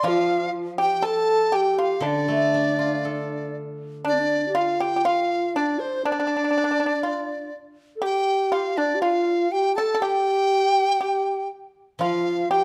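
Graceful and wistful, this short cut from a longer Chinese traditional chamber piece moves at an unhurried 60 BPM in 2/4 with a straight feel, set in the D yu mode. A bright, large dizi carries the melody up front, its bamboo tone airy and buzzing from the membrane, with vibrato, tongued notes and lifted highs. Beneath it, a low xiao plays a breathy, expressive second line, end-blown and warm with its own vibrato, also sitting forward in the mix. The pipa adds a second line of dry, percussive fingerpicked notes, while a steel-string zither lends ringing, silvery accompaniment before falling away at 5.1 seconds and returning briefly at 12.0 seconds. A moderate recital-hall reverb gives the ensemble a natural sense of space as the music passes from its opening section into a second one at 4.0 seconds.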